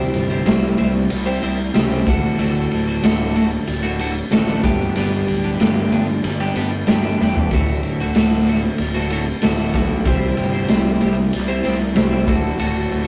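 A straight, steady rock beat from a raw garage drum kit drives this trippy, kaleidoscopic psychedelic rock excerpt, with a punchy kick, medium-tuned snare, ride cymbal and toms sitting up front in a gritty, saturated sound with a rolled-off top. A clean, twangy twelve-string electric guitar carries the riff from the start, its bright, compressed picking ringing prominently over chords that move from C to D, G, D, C and back to D. Underneath, a picked electric bass growls with overdriven fuzz, its tone coming through both direct and amped. A drum fill at 7.2 seconds leads into the entry of a jingly tambourine at 7.5 seconds, which stays in the background of a live room. Light reverb and tube saturation give the whole take the rough feel of a rehearsal-room recording.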